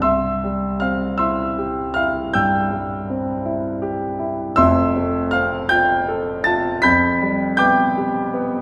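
A warm, up-front grand piano rings through a wet recital hall, its natural tone carried by a reverb with a 1.4-second decay in a church or concert hall. This short cut from a longer romantic nocturne, in C major and 12/8 at a slow 53 BPM in dotted quarters, moves with dreamy, nostalgic rubato as the solo piano spans from F1 to B6. The harmony rests on C before shifting to Fmaj7 at 4.6 seconds and G7/F at 6.8 seconds.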